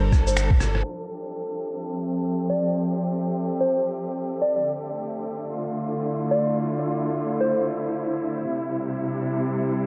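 An excerpt of wistful, ghostly future garage at 126 BPM with a swung 4/4 feel opens on a soft, round, warbling FM synth lead with chorus and tape echo over bright, bowed studio strings roughened by 12-bit sampler grit, sidechain pumping and a filter sweep, while a dark, detuned, rumbling saw bass, a muffled, thumpy kick and a tape-warm rim click, shaker and finger snaps hit only in the first 0.8 seconds, before an airy, wind-like tuned noise texture drifts in at 1.3 seconds beneath a huge ambient reverb as the chords move from Gmadd9 through Fmaj7 and Dm11 to Cadd9.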